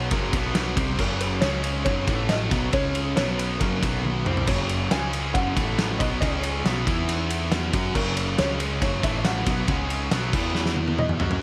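An open-back banjo carries a mellow, plunky fingerpicked melody over three overdriven and fuzzed guitar riffs and a growling, overdriven picked bass from the very start, with a loose, muffled indie drum kit entering at 0.1 s, up front, with a fat snare, punchy kick and dark cymbals. This bittersweet, cathartic alternative rock cut moves at 138 BPM in a straight 4/4, cycling through chords rooted on F#, B, C#, A and E, while the bright fuzz guitar carries a slapback echo and a crunchy double-tracked guitar sits very quiet in the mix. Drum fills land at 4.0 s and 10.6 s, and a light reverb gives the lo-fi studio room sound a little space.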